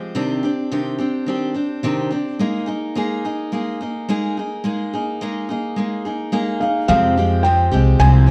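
A steady, straight 4/4 pulse at 107 BPM carries this short, wistful fragment of acoustic folk, cut from a longer piece. A picked steel-string acoustic guitar sits up front from the start, moving through Cmadd9 and Absus2 with a warm auditorium-body tone. At 6.6 seconds a felt-muted upright piano enters high in its register with a soft, intimate melody bathed in plate reverb, and at 6.9 seconds a pizzicato upright bass joins on woody, thumpy gut strings as the harmony shifts to Fmadd9. The whole piece sits in a moderate studio room and carries the haze of worn cassette tape, whose warbly pitch drift lends the haunting mood an aged, fragile quality.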